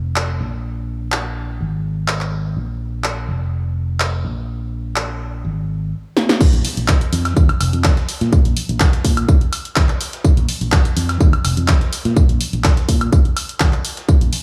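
Bittersweet and soulful, this piano house excerpt moves at 125 BPM in a straight 4/4, opening with an up-front fingered electric bass, low-pass filtered and pumping against the sidechain, alongside a punchy analog drum machine of crash, handclaps, hi-hat, snare and woodblock with a short room on its snare, clap and hats. After a drum fill at 6.2 seconds, the drop lands at 6.4 seconds, bringing in a layered, tape-warm electronic kick placed prominently in front and a gritty, overdriven breakbeat sampler-style kit of hi-hat, snare and tambourine tucked into the background. Light studio reverb gives the small-room sound a touch of space.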